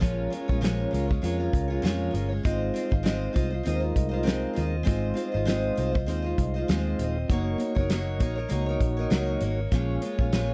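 A loose indie drum kit sits up front with a fat snare, a tight kick and hi-hat, recorded in a small room, anchoring this hazy, laid-back slice of bedroom-flavoured indie pop cut from a longer piece. Beneath it, a vintage muted electric bass plays dark, round and punchy, its foam-muted, amped tone pressed close to the listener. A picked steel-string jumbo acoustic guitar adds full-bodied picked accompaniment, touched with subtle chorus and a vibrato effect. A soft, flute-like tonewheel organ with audible key click turns through a slow rotary speaker and a cassette tape colour. The groove sways on lightly swung sixteenths as the harmony drifts from Bbm7 to Ab6 and Gb6 before returning to Bbm7 at 9.7 seconds. The whole sounds like a dry, close 1970s-style studio recording with only light reverb.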